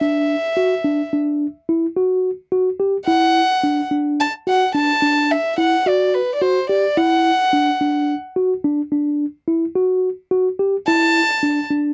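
Progressive instrumental in a straight 7/4 at 108 BPM, centred on D mixolydian, with a driving, bright mood: a single dark, airy violin bowed sul tasto floats a pure, soft-attack melody over mellow tine electric piano arpeggios, both up front from 0.0 seconds in a dry, close 1970s-style studio sound with moderate booth ambience.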